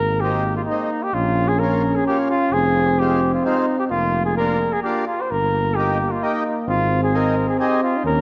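A vintage-toned flugelhorn carries the melody up front with light vibrato and a touch of analog delay in this festive, jolly alpine folk dance-band excerpt in a straight 3/4. A smooth-topped euphonium plays a classical-style second line beneath it, while a dark, soft-attacked tuba, also up front and with its own light vibrato, anchors the bass. A reedy, full accordion fills in the mid-range accompaniment from 0.2 to 7.8 seconds, all set in a wet recital hall reverb.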